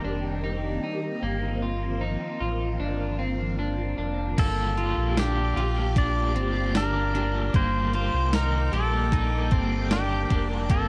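The recording has an echo-heavy, cassette-tape character with light reverb, suiting this hazy, haunting piece of dream pop cut from a longer work. From the start, a bright, swirling vintage string machine holds sustained sawtooth chords through ensemble chorus and phaser. With it, a slightly broken-up electric guitar picks compressed arpeggios bathed in lush chorus and analog delay, over a deep, sine-toned sub bass with octave that sits up front. At 4.4 seconds a clean 12-bit drum machine enters with a thumpy kick, medium-tuned snare, hi-hat, tambourine and crash, its sampler-style hits pushed through overdrive. Alongside it come a twangy pedal steel carrying the melody with fingerpicked slide and volume swells under analog delay, and a raw garage guitar adding overdriven, tremolo-laced accompaniment with subtle chorus. The harmony moves from Cm7 and F7sus4/G to Gm7 and Ebmaj7/G.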